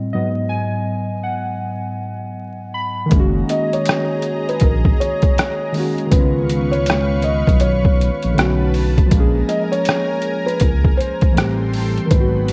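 A dry, crackling vinyl texture frames this reflective, nostalgic lo-fi hip hop excerpt at 80 BPM in a swung 4/4, which opens with warbling, detuned synth keys playing alone through a cassette-tape haze until 3.1 seconds. A gritty, pitched-down, sampler-style trip hop kit then arrives up front with a thumpy kick, hi-hat and rim click, joined by a smooth, dark synth bass and a lush, slow-blooming unison pad, while a felt-muted upright piano enters at 3.5 seconds with a soft, intimate melody carrying audible action noise and analog delay. The chords move from G#m7 through F#69 and C#7 to Am7.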